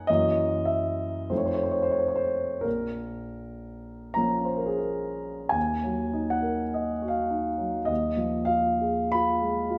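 A warm concert grand piano sits up front with a deep bass, carrying this short, yearning romantic nocturne entirely alone in a slow, rubato 4/4 that sounds cut from a longer piece. Its mournful harmonies move from Gb7 through F7 to a settled minor chord, then shift into Eb minor at 5.6 seconds, reaching for an uneasy half-diminished colour near the close. A moderate recital hall reverb gives the single instrument a natural sense of space.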